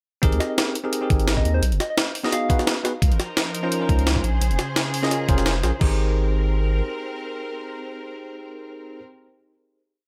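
Liquid drum and bass at 172 BPM in Ab major, dreamy and warm: a gritty, pitched-up breakbeat kit with a high-tuned snare and a thumpy electronic kick drive rolling two-step drums under a deep, saturated sub bass line and bell-like electric piano stabs with tape echo, while a round, vintage FM synth lead warbles through chorus and dub echo from 0.4 to 2.6 seconds, and distant bowed symphonic strings enter at 3.0 seconds to carry the closing Abmaj9 chord after the drums stop at 5.9 seconds.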